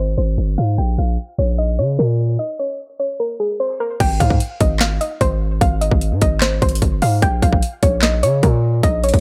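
Set in a low-pass-filtered digital ambience, this wistful yet triumphant trap excerpt in Ab major moves at 149 BPM with a half-time feel. A soft, round pluck carries the melody with chorus and tape echo over a distorted, heavy 808-style bass, both up front, while a filter sweep shapes the opening and a break arrives at 2.4 seconds. At 4.0 seconds an overdriven trap kit enters with a hard-clipped kick, sharp snare, metallic hi-hats, handclaps and crash cymbal.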